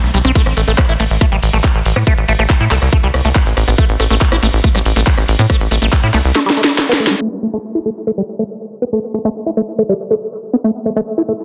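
A squelchy, resonant liquid acid bass riff drives this intense, hypnotic psychedelic trance excerpt in A minor at 140 BPM, pumping through phaser and dub echo over a punchy sawtooth sequencer bass, an overdriven electronic kick and a garage kit of cracking snare, handclaps, hi-hat, ride and rim click, before a drum fill at 6.4 seconds gives way at 7.2 seconds to the acid bass alone under a filter sweep in a dense, heavily limited mix.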